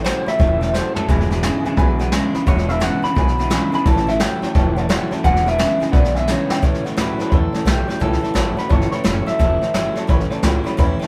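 A twangy, compressed, slightly broken-up electric guitar through a small old amp carries the melody in this upbeat, rollicking rockabilly excerpt, taking a clean solo from the start until 6.6 seconds and dropping out at 9.9 seconds. The tempo is 173 BPM in 4/4 with a swung eighth-note feel in A mixolydian, and the harmony moves between A7 and E7. A second bright, twangy electric guitar plays a low riff, while a woody, thumpy upright bass with gut strings holds down the bottom. Up front, a jazz kit played with brushes adds a boomy kick and a medium-tuned snare, with short fills near the opening and just before 6.6 seconds. Behind them sit a full-bodied dreadnought acoustic guitar picking out accompaniment and a dark, mellow upright piano, a little detuned and with audible action noise, as the band plays live in one room with moderate studio reverb.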